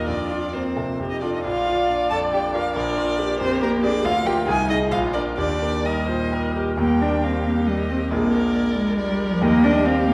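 Cheerful and graceful, this quick classical-period movement for piano quartet in 3/4 unfolds with rubato, as a rich, expressive violin sings the melody with vibrato and portamento over a focused, smooth-topped cello second line, while a bright, polished concert grand with deep bass and a close, soft-attacked viola share the accompaniment, heard in the wet reverb of a church or concert hall.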